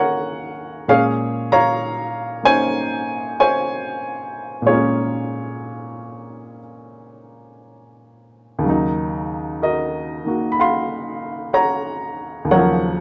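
A woody, polished upright piano sits up front, playing alone across the 13 seconds of this cool, moody solo jazz fragment cut from a longer piece. Its short-sustain tone reaches from deep bass to the upper register, moving from Ebm9 to Bbm9 and back to Ebm9 at 8.6 seconds. The slow 4/4 swing feel is loose and rubato with uneven beats, and a light reverb adds a touch of space.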